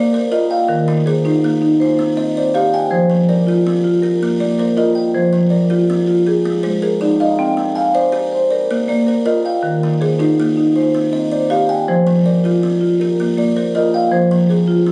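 A buzzing kalimba and a soft-mallet marimba begin together, weaving arpeggios into an interlocking cycle in the manner of southern African mbira music. The mood is trance-like and hypnotic, moving in 12/8 at 107 BPM in dotted quarters with a straight feel in F dorian. The marimba sits up front, its rosewood bars giving a round, mellow, woody tone. The kalimba lies further back in the mix, its thumb-plucked tines ringing with a buzzing rattle over a hollow box. The chords cycle through Bb, Eb, Cm and Fm, with a brief turn to F5 and Ab before the loop returns and settles on Fm at 14.1 seconds. Captured on a phone in a small room with moderate reverb, this cut from a longer piece ends at 14.9 seconds.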